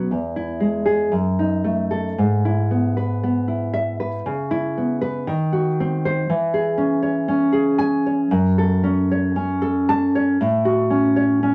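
Warm and nostalgic, this romantic excerpt for solo nylon-string guitar drifts in a rubato 2/4 feel across an 11.5-second passage, the up-front guitar sounding dark, woody and full-bodied on old strings, thumb-plucked across a span from E2 to A5 as the harmony moves through diminished and minor colours, all set in a wet small-room reverb.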